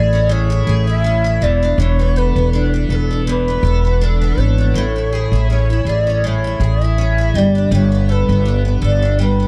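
A woody, growly pizzicato upright bass sits up front in this easy-going, carefree pop excerpt in A major, moving at 81 BPM with a light sixteenth-note swing over Amaj7, E7sus4 and Gadd9 chords. A bright, shimmering picked twelve-string acoustic guitar, double-tracked and octave-doubled with audible finger squeak, carries the accompaniment. A distant, airy bamboo shakuhachi plays the tongued melody with vibrato, chiff and a digital delay, all in a dark, dry production.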